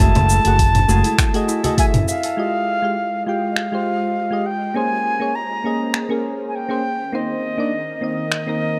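This wistful sunset chillout piece opens at 101 BPM in F minor with a reedy, airy silver flute carrying the straight-toned, tongued melody up front, its line echoed by delay. Beneath it sit round electric-piano-like synth keys with chorus and delay, and a ringing, fingerpicked harp plays arpeggios in the background. A bright, direct fingered electric bass, a deep electronic kick and very quiet, dry congas played with soft hands sound only briefly at the start, with the kick dropping out at 1.9 s. A layered deep house kit of cabasa, finger snaps, hi-hat and toms keeps a straight 4/4 pulse nearly to the end. At 3.0 s an ethereal, detuned pad with a slow attack and ensemble chorus enters, and the harp stops at 4.4 s. The harmony moves through minor ninth chords, Gbm9, Fm9, Bbm9 and Cm9, while light reverb and a dark, warm production give the excerpt a warm feel.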